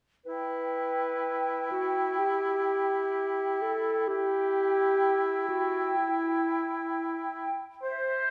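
Sorrowful and bittersweet, this brief fragment of a cinematic, emotional film score unfolds slowly at 64 BPM in 4/4, its rubato feel letting the phrases breathe freely over a single E minor harmony. A large flute ensemble, a clarinet and an oboe all sound together from 0.3 to 8.3 seconds, each carrying a second line rather than a leading melody. The flutes sit high, between E5 and G5, with a pure tone, vibrato and a crisp attack, yet they sound distant, set back behind the reeds. The clarinet is the most prominent voice, up front and smooth on top, moving between E4 and C5 in a classical solo style. The oboe shares that same range, close-miked with light vibrato and a warm classical tone. A wet scoring-stage reverb with a 1.7-second decay surrounds the ensemble, giving the short passage a spacious, mournful glow.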